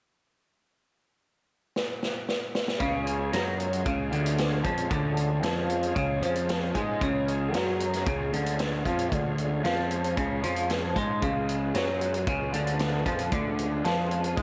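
A straight 4/4 pulse at 114 BPM drives this dark, mysterious psychedelic rock excerpt, opening with a vintage drum kit that enters on a fill at 1.8 s, its punchy kick and medium-tuned snare sitting up front with a rolled-off top. At 2.8 s the band lands on C#: a twangy, double-tracked electric guitar plays a compressed, phased riff, a fuzzed, overdriven picked bass holds the low end, and a reedy tonewheel organ with key click, slow rotary speaker and chorus vibrato sustains chords in the background. A lush hall reverb soaks the whole mix in a dreamy haze.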